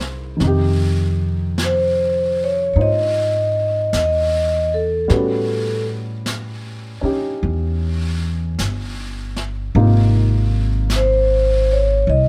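A slow 52 BPM swing in 4/4 sets a romantic, intimate jazz ballad, with a small-room brush kit on snare and hi-hat beneath a growly, woody pizzicato upright bass that sits up front. A polished upright piano with short sustain comps through Fm9, A13 and Ab6, and at 1.6 seconds a mellow, ringing vibraphone played with soft mallets and its motor off enters with the melody. Light reverb rounds out this intimate fragment cut from a longer piece.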